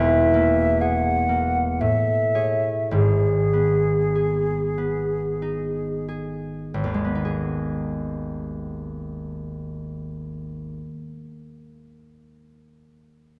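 A hollow, pure-toned concert flute and a ringing, fingerpicked concert harp begin together in this wistful, mysterious impressionist duo, a passage cut from a longer classical piece. The flute carries the melody up front with vibrato and tongued notes, sounding close and intimate, while the harp supplies a deep-reaching accompaniment in a lilting three-beat metre. The tempo is freely rubato and slows through the opening phrase as the harmony drifts from lush major-seventh colours into a darker minor chord. The flute falls silent at 6.1 seconds, and the harp continues alone into a new section until 11.3 seconds. A generous scoring-stage reverb surrounds both instruments, and the production is dark and warm.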